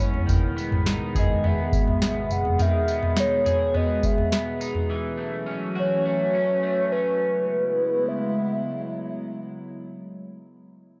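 A straight 4/4 pulse from a booming analog drum machine, with deep kick, crisp snare, tambourine and toms, drives this ethereal, blissful dream pop fragment until 4.9 seconds, alongside a dark, round, foam-muted bass that stops at 2.6 seconds, while a warbling, nostalgic tape-like pad with phaser holds sustained chords up front, a twangy, slightly broken-up electric guitar picks arpeggios through tape echo, and a hollow, woody clarinet-like synth lead with vibrato carries the melody from 1.2 seconds, the whole recording sitting in moderate spring reverb with the lo-fi character of a home cassette recording.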